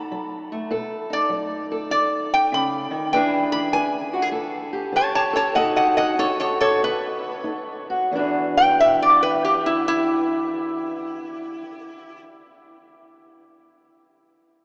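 Swung eighth notes roll along in 4/4 at roughly 90-100 BPM, and the pulse slows down between 3.1 and 8.1 seconds. This short, rollicking and gritty piece of acoustic country blues in E mixolydian is cut from a longer performance. A fingerpicked steel-string parlour guitar sets the accompaniment, its dark, woody, boxy tone and old strings sitting up front as it moves through B7, E7 and A7 before settling on E9 in the closing section. At 1.1 seconds a lap resonator guitar enters with the melody, played with slide and fingerpicks and sounding metallic and nasal, also placed up front and carrying higher in the mix. The pair sit in a vast, echoing space with a long cathedral reverb, yet the overall sound has the narrow quality of a small speaker.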